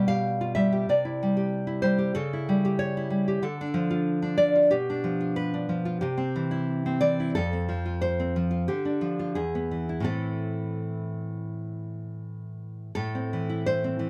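Romantic solo classical guitar in A minor, melancholic and intimate, where a fingerpicked nylon-string guitar sits up front with close, detailed presence and light reverb, moving with rubato at around 80-96 BPM through chords such as G7/B, C, A7/C# and Dm before settling from E onto Am at 10.1 seconds in this brief 14.1-second fragment cut from a longer piece.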